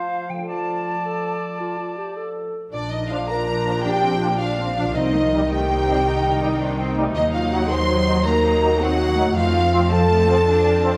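This triumphant, heroic film-score excerpt in Bb major opens in a straight 12/8 at 108 BPM, with a pure, up-front flute group, a clear solo oboe and a dark solo clarinet sharing a brief woodwind line over mellow, roomy French horn chords and a ringing harp arpeggio in the background. At 2.7 seconds the woodwinds give way to lush bowed strings: an intense, distant violin melody with vibrato, a smooth second violin line and violas in the background, and rich double basses beneath. Trombones add soft-attack sustained chords from 3.1 seconds, cellos join the bass, and a wet scoring-stage reverb surrounds the orchestra as the harmony moves from Bb through Cm and Ebm to F.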